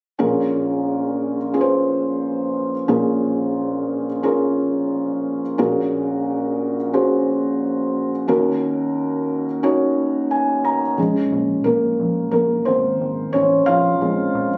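A felt-muted upright piano opens this dramatic, bittersweet pop excerpt, its thick felt giving a dark, intimate tone that sits up front in the sound. At 89 BPM in 4/4 with a light swing on the sixteenths, the piano carries the accompaniment in B-flat minor, moving through Bbm7, Gbadd9/Bb and Ebm7 before returning to Bbm7. A short piano fill at 10.0 seconds leads into a new section at 11.0 seconds, where the piano takes a solo. Here a retro, glossy synth bass joins underneath, its pulse-wave and sawtooth tone saturated and coloured by chorus, sitting lower in the mix than the piano. The recording has a roomy, dulled character, captured on a phone in a space with club-like reverb and a softened top end.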